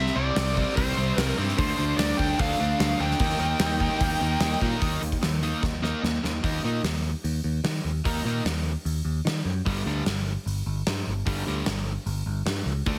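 A high-gain lead guitar opens this heavy, aggressive hard rock excerpt in G minor with a distorted melody coated in slapback echo, falling silent at 4.6 s. Beneath it, two overdriven semi-hollow guitars churn out the riff at 149 BPM, one bright and the other set back in the mix, while a growly, punchy picked bass sits up front. A gated 80s kit with a tight kick and a polished stone-room sound drives the piece, breaking into a drum fill at 5.6 s, all within a small room and a heavily compressed, radio-like sound.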